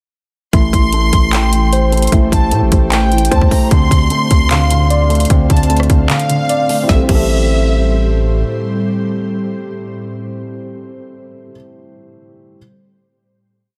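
Hard-hitting, eerie half-time trap hip hop piece in which a hard-clipped kick, woody snare, rim click, handclaps, crash and metallic hats with fast rolls hit up front beside a distorted, saturated 808-style bass with pitch slides, while a felt-muted upright piano and a mellow tine electric piano with tape echo repeat looped arpeggios, a lush violin section adds a sparse counter-melody through tape echo, and an ethereal, detuned pad with chorus and reverb sustains in the background, until a final chord arrives at 6.9 seconds, the drums stop at 7.2 seconds and the upright piano rings on past the pad and electric piano to 12.6 seconds in a dense, heavily limited mix.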